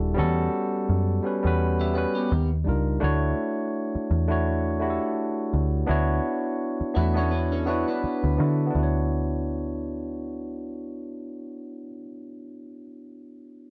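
A barky, lightly overdriven tine electric piano sits up front in this smooth neo-soul R&B cut from a longer piece, gliding over lush ninth and thirteenth chords while a deep, round, foam-muted dub bass plays dark and direct beneath it, a compressed, slightly broken-up electric guitar with subtle chorus slips in briefly around 1.8 and 7.0 seconds, and the piano carries on alone after the bass stops at 11.9 seconds, all captured in a dry, close 1970s-style studio sound.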